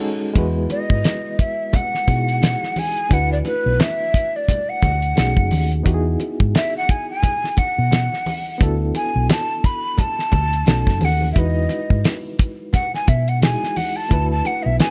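A breathy, mellow jazz flute carries the melody through this romantic stretch of lush 1970s-style soul. Its tongued, vibrato-laced lines arrive at 0.7 seconds and run to the end as a solo. The piece opens with a short band accent before settling into a relaxed swung sixteenth-note groove. A round, dark hollow-body electric bass sits up front beside a dry, damped drum kit whose fat snare, tight kick and hi-hat have a rolled-off top. Underneath, a reedy electric piano shimmers with fast tremolo over lush chords such as Emaj9, D69 and B13, while ringing congas sit in the background. The small room reverb keeps the sound intimate, and this clip is cut from a longer piece.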